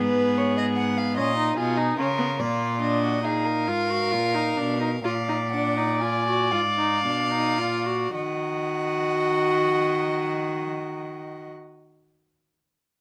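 In a straight, slow 12/8 pulse of 35-51 BPM that slows through the first 8.1 seconds, this serious, contemplative baroque-style fugue for string quartet in Eb minor, cut from a longer piece and set in light reverb, bows its period-style, reedy gut-string lines as a warm first violin carries the melody over a dark, nasal, distant second violin, an up-front viola with light vibrato and a smooth top, and a rich, close cello bass, moving from Fm7b5/Ab to Bb7 before settling on Ebm at 8.1 seconds.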